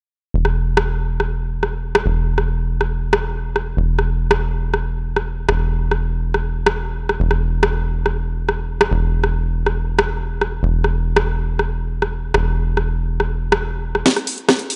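A straight 4/4 pulse at 140 BPM drives this hypnotic, intense psychedelic trance passage, where a tight sawtooth-and-square sequencer bass plucks low around E1 with a fast attack and decaying tail, an up-front techno drum kit of hi-hat, rim click and cracking snare runs from 0.5 seconds, and a punchy, tape-warm electronic kick drum arrives only for a drum fill at 14.1 seconds, all in a dry, dark-topped mix cut from a longer piece.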